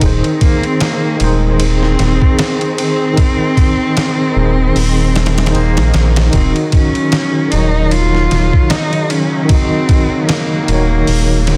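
A hypnotic, dark trip hop excerpt in which a gritty, pitched-down sampler drum kit with a thumpy kick and studio reverb sits up front beside a round, deep analog bass, while a tine electric piano with tremolo and 12-bit grit plays accompaniment, a veiled, muted string section holds distant chords in the background, a rich, focused solo cello with tape echo carries the melody from 0.4 seconds, and a very quiet electronic swell surfaces at 5.1 seconds, just before the harmony moves from Abadd9/Eb to Ebm7 at 6.3 seconds.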